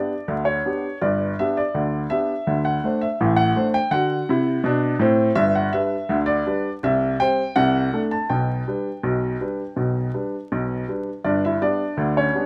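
Ragtime in a lively, jaunty mood, this short fragment of a longer piece features a solo upright piano with a warm, woody, up-front tone, moving in a straight two-beat feel across a range that spans low bass notes and the upper register. The piano sits in a moderate spring reverb over a layer of vinyl crackle, and the opening strain starts again at 11.2 seconds just before the cut.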